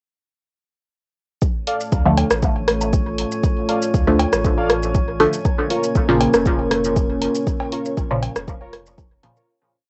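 At 1.4 seconds a dark analog pad, an overdriven four-on-the-floor electronic kick and a programmed deep house kit of hi-hat, rim click and shaker arrive together, setting a meditative, deep dub techno groove at 119 BPM in D harmonic minor. The moody pad holds sustained chords with lush chorus, pumping against the kick and softened by cassette tape, while the kick and kit sit up front with a gritty, re-recorded small-room edge and dub echo trailing the hats. Warbling, nostalgic lo-fi synth keys add sparse, echoing chord stabs, joined by a round sine sub bass line, a distant woodblock and cowbell with dub echo, and a muted, phased sawtooth chord stab that moves one shape in parallel. A glassy texture of drifting overtones holds a high note with built-in reverb far in the background. The harmony shifts from Dm to Bbm at 5.5 seconds, and the piece fades out from 6.8 seconds, its hazy cassette sound dulling the highs.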